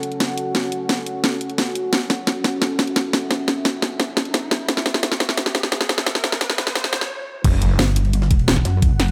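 A moody, detuned pad and a drum and bass kit with a cracking, up-front snare and crash open this tense, mechanical slice of dark technical drum and bass, building under a filter sweep and drum fill while a faint riser creeps in at 4.0 seconds before a brief stop. At 7.4 seconds the drop lands with an impact, a knocking electronic kick, a barely audible gritty jungle sampler-style kit and a snarling, distorted saw bass that growls for a moment before a pulsing, heavy pluck wobble bass with chorus takes over. The mix carries light reverb, and the pad pumps against the sidechain.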